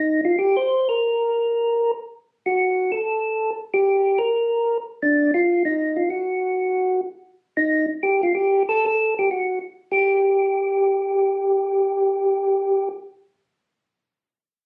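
A lone tonewheel organ opens this short jazz excerpt and carries it by itself from the first moment to 12.9 seconds, set up front in the sound. Its tone is mellow, round and dark, clean, with a percussive third-harmonic attack and a slow rotary speaker turning beneath it. The line stays in a compact middle register, and the mood is bluesy and late-night, riding a brisk swing in four. The passage falls into three short stretches, with the music shifting at 7.4 seconds and again at 9.9 seconds. Captured on a phone in the room, the organ sits in a light studio reverb with compression.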